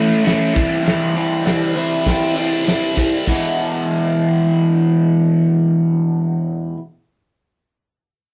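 Garage rock with a rowdy, raw mood at 99 BPM in a straight 4/4, cut from a longer piece and captured in a rough rehearsal-room sound with moderate studio reverb. A crunchy, bright, overdriven electric guitar, picked and double-tracked up front with a phaser, drives a riff from 0.0 to 6.8 seconds, moving from A to C and then to E at 3.3 seconds. A cloth-damped, thuddy acoustic drum kit with dark cymbals, a fat snare, a tight kick, hi-hat and crash sits lower behind it, its top rolled off, before dropping out at 3.4 seconds.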